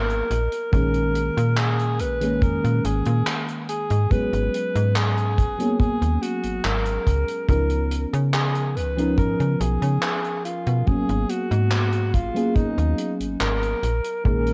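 A breathy alto saxophone with light vibrato and tape echo carries a woozy, melancholic vaporwave melody over a round, dark FM electric piano in lush chorus, while a snappy, metallic slap-like FM bass sits up front, all three sounding from the start of this cut from a longer piece. A dry, damped 70s drum kit of handclaps and hi-hat with gated reverb enters at 0.1 seconds, and a tight acoustic kick joins at 0.7 seconds. The harmony drifts from D#7sus4/A# through G#m11 and C#13, and the recording carries a small-room cassette ambience.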